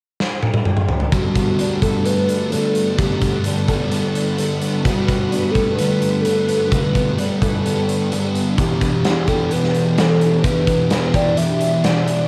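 A straight 4/4 drum fill on a big, punchy rock kit opens this dreamy, blissful shoegaze and dream pop excerpt, and from 1.1 seconds the band settles on Gmaj9 then Em7: an up-front, dark fuzz guitar riff with chorus, a very quiet clean electric guitar riff, a hollow, woody clarinet-like synth lead with vibrato and delay carrying the melody, and shimmering string machine violins sustaining chords in the background, joined at 1.4 seconds by a full-bodied, octave-doubled fingerpicked twelve-string acoustic guitar playing arpeggios, all softened by light reverb and the vintage haze of a home cassette recording.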